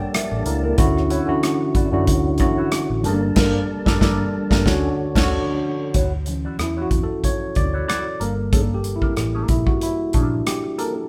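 A barky, lightly overdriven tine electric piano sits up front through this lush 1970s-style soul excerpt, worn and slightly out of tune as it plays accompaniment before taking a solo from 5.9 seconds to the end. Beneath it, a mellow tonewheel organ holds dark, round sustained chords in the background with chorus vibrato and a slow rotary speaker, dropping out at 5.9 seconds. A clean, fingered electric guitar plays a dark riff through a wah, while a foam-muted, round and punchy vintage bass anchors the low end. The acoustic drum kit is up front, with bright cymbals, a medium-tuned snare, a punchy kick, hi-hat and rim clicks, and the band hits an accent together just before the solo. Swung sixteenths and rich chords moving between Gmadd9 and Dmaj9 give the groove a lush, warm glow, and the whole band plays live in one room with a moderate large studio reverb.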